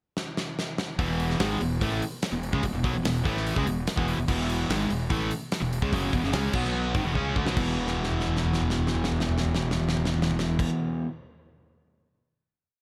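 Sunny and driving, this short classic rock piece in E major charges along at 146 BPM as a big, punchy rock drum kit with a fat snare kicks off with a fill at 0.2 seconds, a bright, up-front cranked stack guitar and a compressed overdriven electric guitar in the background enter at 1.0 seconds with a power-chord riff over a round, fuzzy fingered bass playing driving eighth notes that double that riff, and further drum fills carry everything into a final E5 chord at 7.6 seconds, all in a light reverb.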